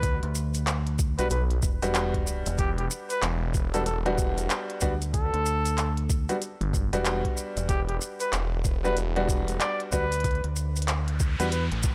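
Glitch hop at 94 BPM in 4/4 with a swung sixteenth feel, this playful, gritty cut from a longer piece sits on an E minor seventh chord throughout. A breathy trumpet carries the jazz-style melody with vibrato and a smooth top, touched by analog delay, while a clear grand piano enters at 1.2 seconds with short, up-front stabs that pump against the sidechain and echo through their own delay. Underneath, a round, punchy fingered electric bass digs deep and dark, joined at 1.3 seconds by a thick, swirling detuned saw bass driven through a phaser until 9.6 seconds. A compressed, thumpy electronic kick anchors the groove beside a glitchy kit of handclaps, rim clicks and clicky, tape-warm hats, with grainy, mellow maracas heard close and dry. An electronic noise sweep enters at 10.6 seconds, and the whole mix stays dry, with a gritty hardware character and transformer saturation.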